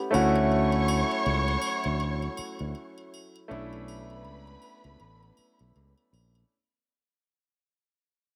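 A growly, punchy fingered electric bass sits up front beside a clear grand piano in this silky, cinematic slice of lush 1970s-style soul, moving from Dmaj7 to Bm11 at 3.5 seconds under a swung sixteenth-note feel. Above them, a bowed studio string section sings an expressive second line with vibrato and portamento, while a very quiet, mellow French horn section holds tight sustained chords and a shimmering triangle adds sparkle. Light reverb and studio ambience color the cassette-recorded home sound, and the whole brief cut plays as a fade-out.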